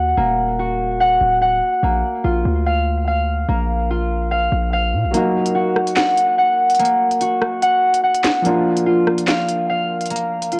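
Drill-style hip hop at 145 BPM in a half-time 4/4 feel, this cold, menacing passage sits in Eb harmonic minor and moves between Ebm and Bb chords. A fingerpicked concert harp carries ringing arpeggios throughout, sitting up front with a low-pass filter and tape echo shaping its warm, acoustic tone. For the first 5.1 seconds a punchy, heavy 808-style bass with a sine body and a noise layer hits with a fast attack and decays, colored by transformer saturation. At 5.1 seconds the bass gives way to a felt-muted upright piano, mellow and intimate with audible action noise, and a drill drum kit of handclaps, crisp hi-hats, rim clicks and a sharp snare, its kick muted, roughened by 12-bit sampler grit and cassette tape. A moderate spring reverb and the character of a home cassette recording shape the sound of this cut from a longer piece.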